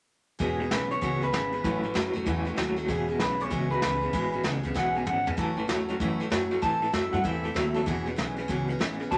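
A moderate studio reverb surrounds this upbeat, retro rockabilly excerpt at 193 BPM in E major, swung on the eighths and moving through E6, A6 and Am7. Up front, a slightly broken-up, lo-fi electric guitar through a small old amp carries the picked melody, while a second twangy, bright electric guitar with tremolo plays a low riff. A full-bodied dreadnought acoustic guitar plays picked accompaniment, a woody, thumpy pizzicato upright bass anchors the bottom, and a dark, smooth brush kit with a punchy kick adds a drum fill at 4.8 seconds.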